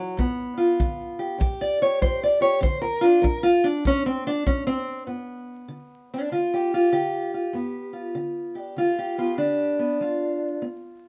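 Laid-back and swaggering, this acoustic country blues excerpt swings easily at 98 BPM in 4/4 in G mixolydian, moving through G7, C5 and D5. A dark, boxy parlour steel-string guitar is fingerpicked up front, carrying the melody and taking a solo through the opening section, while a punchy, natural kick drum played with brushes sits close beside it from 0.2 to 4.7 seconds. Moderate studio reverb and a layer of vinyl crackle give the sound an old-record feel as the guitar carries on into the second section at 5.1 seconds.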